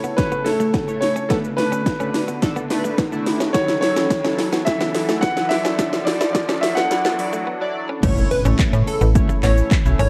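Confident and energetic, this dance-pop excerpt at 107 BPM builds for 8 seconds over A, Bm7, F#m7 and Dadd9 chords, as a clear, intimate grand piano with audible action noise carries the melody with delay, backed by a glossy, retro chorused polysynth with sidechain pumping, a very quiet, evolving resonant pad, a clean direct-recorded electric guitar riff in the background, a very quiet riser, a filter sweep and a drum fill from an overdriven house kit with a punchy kick, cracking snare and metallic hats. After a brief break at 7.5 seconds, the drop lands at 8.0 seconds with an impact and a snappy, up-front FM slap bass with sidechain pumping, joined at 8.3 seconds by a catchy, detuned unison lead. The production is dark and lightly reverberant.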